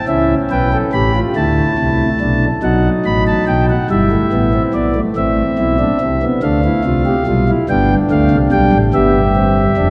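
Bathed in a wet cathedral reverb with a 4.4-second decay, this driving, solemn excerpt from a baroque-style four-part classical fugue sets an up-front chamber organ on a smooth principal stop with audible chiff alone at 48 BPM in a straight 6/8, tuned to A4 = 439 Hz and spanning F1 to B5 as it moves through a chain of chords from A7 to a closing C/G at 8.9 seconds.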